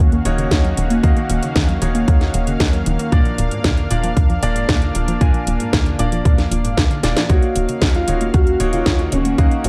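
A punchy electronic kick drives this melodramatic, danceable italo disco clip in Eb minor at 115 BPM, cut from a longer piece and thumping from 0.5 s in a straight 4/4 with a tape-warm, small-room character. Underneath, a tight, nasal sequencer bass built from sawtooth and square waves pushes the groove, while a house kit adds a cracking snare and metallic hats. A thick, detuned unison pad holds sustained chords with chorus, and a warbling, lo-fi pluck with a dusty noise layer spins arpeggios through chorus and delay. A brilliant baby grand piano punctuates the harmony with delayed stabs as the chords move from Ebm7 to Bb/Eb and back. After a drum fill at 7.0 s, a dark, boxy concert grand enters at 7.3 s with a short melody bathed in tape echo, all set in light digital ambience with a dusky production.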